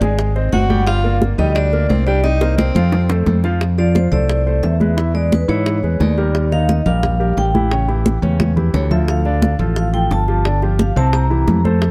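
This excerpt of Afro-Cuban jazz opens with vibraphone, breathy tenor saxophone, concert grand piano, electric bass, bongos and congas all sounding together at 175 BPM in a straight 4/4, with a sophisticated, danceable mood. The saxophone adds a whispered, intimate second line with a soft attack and vibrato, then drops out at 3.2 s. A drum fill leads into the next section at 3.6 s, where the music settles in F major and the metallic, ringing vibraphone, shimmering with fast motor vibrato, takes a solo that runs to the end. Underneath, the piano provides warm, natural accompaniment with deep bass, while the punchy, up-front fingered bass drives the low end with a bright, direct tone. The tight, high-tuned bongos and thin-skinned congas, played with soft hands and heard close and dry, keep the percussion light, and another fill arrives around 8.2 s. The harmony moves through colorful changes such as Fmaj7, E6 and A7, and a light reverb gives the whole performance a touch of space.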